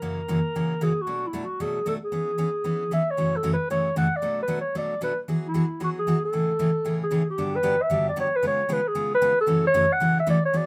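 A brisk swing at 228 BPM in 4/4, with a lilting eighth-note feel, drives this lively, charming jazz excerpt cut from a longer piece. A mellow clarinet carries the melody up front, its subtone, light vibrato and scooped notes giving it a vintage air, while a bright, full-bodied picked steel-string acoustic guitar accompanies just as close in the mix. The chords move from F#7 through Bm7, E6 and Amaj7 before shifting at 7.4 seconds to a new section built on Gmaj7, C#7 and F#m7, all set in light reverb.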